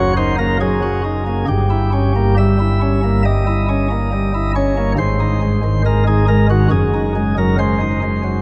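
The rhythm moves in a flexible, rubato 4/4 at about 69 BPM, giving this short classical chorale-style passage a breathing, unhurried pulse. A solo chamber organ carries everything from start to finish, its light flute stops bright and sparkling with a touch of chiff, sitting up front and spanning from a deep Gb1 up to E5. The harmony passes from Ebm/Gb through a Gdim7 at 1.5 seconds before arriving on Ab at 5.0 seconds and an Ab7/Gb at 6.7 seconds, leaving the phrase poised as the cut ends at 8.4 seconds. A long, wet cathedral reverb surrounds the organ, and the overall production is dark and rounded in the upper range. The mood is majestic and reverent, like a fragment lifted from a larger devotional work.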